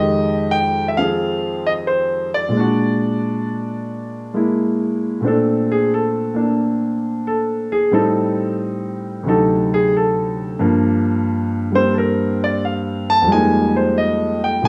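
Heard through a moderate club reverb, this short, sophisticated solo jazz cut from a longer piece features a warm, natural, up-front grand piano swinging at 89 BPM in 4/4, moving from Fm9 and Bbaug7 into Bb major at 5.2 s, where it takes its solo through rich chords like Bbmaj9, D7b9 and Gm7 before settling on Fm11.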